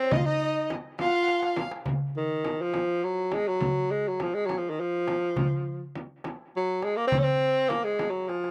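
Dry and open-air, this brief cut from a longer Arabic maqam ensemble piece in 6/8 carries a hypnotic, longing mood, led by a clear, up-front tenor saxophone singing with vibrato throughout, while a lush symphonic violin section and a single expressive violin with portamento add a smooth second line with slapback echo in the background until 1.6 seconds, and a crisp metal-shell darbuka and a deep, vintage-toned frame drum keep the pulse, with drum fills at 1.3 and 8.3 seconds.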